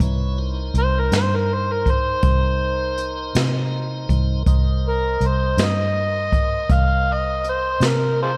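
Soulful and brooding, this short slow blues excerpt in a straight 12/8 feel rests on a single minor seventh chord, with a piping tonewheel organ holding sustained chords through a slow rotary speaker and light overdrive, set back beneath the other parts. A round, foam-muted fingered electric bass sits up front beside a dark brush kit with a boomy kick and rolled-off top, and an overdriven harmonica enters at 0.8 seconds to take the gritty, punchy solo lead, full of tongue slaps, scooped notes and light vibrato, carried by a slapback echo. Light reverb gives the whole a small-room ambience.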